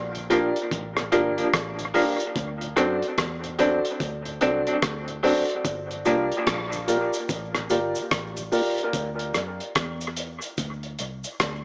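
An echo-heavy mix with a small-speaker sound and light small-room ambience opens this meditative, deep dub reggae excerpt in G dorian, moving at 73 BPM in 4/4 with a swung sixteenth-note feel. The cloth-damped drum kit sits up front, thuddy and muffled with a tight kick, gritty saturation and a rolled-off top, its hi-hat, kick and rim clicks trailing into dub echo. Beneath it, a vintage muted fingered electric bass gives a round, foam-muted, dark low end. An electric guitar through a small old amp adds bright, twangy, slightly broken-up picked accompaniment with tremolo and dub echo until about 6.3 seconds. A woody upright piano places smooth, long-sustaining stabs, also soaked in dub echo, while a soft, flute-like tonewheel organ with key click and rotary speaker lingers very quietly in the background. The harmony moves from Gm7 to D7 and returns to Gm7 at 5.6 seconds, just before a cabasa enters in the background at 5.7 seconds, and the chords give way at 8.9 seconds.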